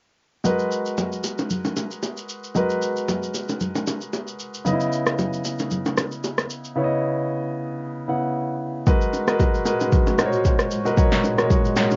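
Soulful and late-night in mood, this amapiano excerpt, cut from a longer piece, moves with a gentle swing in common time. An intimate concert grand piano sits up front with a cassette-tape tint, carrying the accompaniment on lush minor ninth chords; its deep bass, long sustain and audible action noise give it a close, polished presence. An electronic deep house drum kit, equally forward and taped, layers a deep kick, punchy snare, rim click and shaker, its sound re-recorded in a small room. Bright, vintage congas and bongos played with hard hands add an acoustic, band-limited texture underneath. Shortly after the music shifts into a new section, at 9.6 seconds, a cloudy granular pad fades in with slow attack, blurred, evolving chords, built-in reverb and sidechain pumping. The whole recording has a homespun cassette character, with light reverb and a softened, dull top end.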